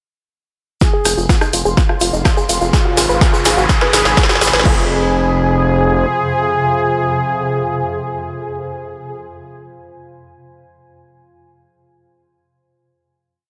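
A straight four-on-the-floor overdriven kick, a punchy analog drum machine with snare, hats, rim and crash, a very quiet brushed jazz kit and a grainy shaker drive this hypnotic, dramatic melodic techno piece at 125 BPM in F minor through a build from 0.8 seconds. There a soft round pluck looping a 6-step arpeggio against the bar and an airy supersaw riff, both under filter sweeps, are joined at 1.1 seconds by a gritty, galloping sixteenth-note synth bass, and together they climb with a background riser toward 4.7 seconds. After that the drums drop away, the bass carries on until 6.1 seconds, and the supersaw, a deep, moody pad and a swarming granular drone sustain the final Fm chord until 9.2 seconds.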